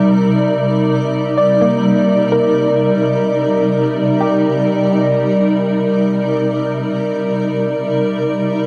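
A bright, blurred granular cloud pad opens this brief fragment of a longer ambient piece, holding sustained chords up front under its own reverb and a shimmer reverb. At 1.4 s a soft, round pluck enters in the background with dark, decaying arpeggios, thickened by lush chorus, tape echo and shimmer, and it stops at 7.7 s. The whole fragment sits in a huge, wet ambient reverb with a cassette-tape character, giving it a reflective and spacious mood.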